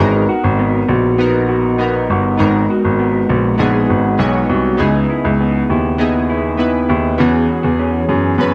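From the opening second, a hazy, mellow bedroom-pop groove at 100 BPM in G# minor sets chorused retro synth keys with a glossy, detuned, cassette-tape tint beside a slightly broken-up, lo-fi electric guitar whose subtle chorus and warbly pitch drift add to the dreamy blur. Underneath, a clear, polished baby grand piano carries the bass line up front, moving through G#m9, C#m7 and E6 in a straight 4/4. Light reverb lends a touch of air to this close, dry 1970s-style studio sound, and the 8.5-second excerpt is cut from a longer piece.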